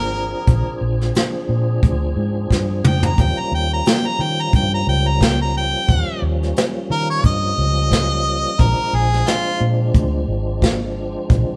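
A straight-eighth soul blues groove at 89 BPM in 4/4, with a light 55% swing on the sixteenths, sets a swaggering, soulful mood in this excerpt cut from a longer piece. A bright, overdriven harmonica carries the melody up front as a solo with light vibrato, playing from the start until 9.6 seconds. Underneath, a tonewheel organ fills out the accompaniment with a full, lightly overdriven tone, key click, chorus vibrato and a slow rotary speaker. A vintage fingered electric bass gives a dark, foam-muted, round and punchy low end. A jazz kit played with brushes comes in at 0.5 seconds with a boomy kick, medium-tuned snare, hi-hat and toms, and adds a fill from 2.5 to 3.2 seconds. The band plays live in one moderate stone room with a 1.4-second reverb, moving from Bb7 to Eb7 and back to Bb7.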